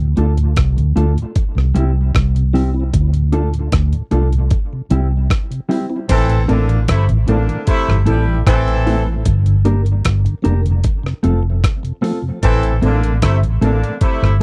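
Hypnotic and laid-back, this roots reggae excerpt rests on a dark, round, foam-muted fingered electric bass sitting up front beside a gritty, overdriven sampler-style drum kit with a thumpy kick, crash cymbal, hi-hat and rim click. A clean, compressed electric guitar with tape echo and a soft, flute-like tonewheel organ in the background, carrying chorus vibrato, key click and a stopped rotary speaker, fill out the accompaniment as the chords shift from Dm and C toward Am, Gm and F. At 6.1 seconds a warm, distant horn section with light vibrato and tape echo enters as a second line, all within a dry, close 1970s-style studio sound.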